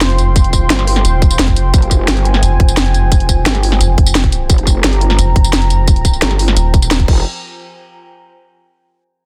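This short cut from a longer dark technical drum and bass track opens at 174 BPM in F minor on a drop, with a moody sawtooth pad holding sustained Fm chords high above a nasal, resonant vowel-sweep wobble bass and a drum kit of cracking snare, hi-hat, tambourine and crash cymbal. The pad is deep and detuned with a sub octave, a slow attack and long release, sitting back in the mix under chorus and sidechain pumping. An up-front, tight electronic kick joins at 0.4 seconds, and a growling, saturated unison bass arrives at 0.7 seconds, its formant-filtered tone pumping under sidechain alongside the wobble bass low in the register. The mood is tense and dark throughout, carried by the layered, produced drums, the aggressive growl bass and the compressed wobble bass. Around 7.2 seconds the parts drop out, leaving a brief passage with the harmony cleared before the cut ends, all in digital ambience under a dense, heavily limited modern master.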